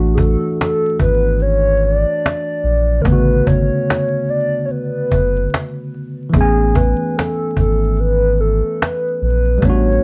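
A worn, slightly out-of-tune tine electric piano and a deep, round sub bass open this dreamy, nostalgic lo-fi hip hop excerpt at 73 BPM, swung on the 16ths in A major and moving from D through Bm7 to Amaj7, as a hollow, woody clarinet-like synth lead with chorus, vibrato and plate reverb carries the melody from 0.1 seconds and a snappy, close cajon with vintage 12-bit sampler grit enters at 0.2 seconds, under a layer of vinyl crackle and light reverb.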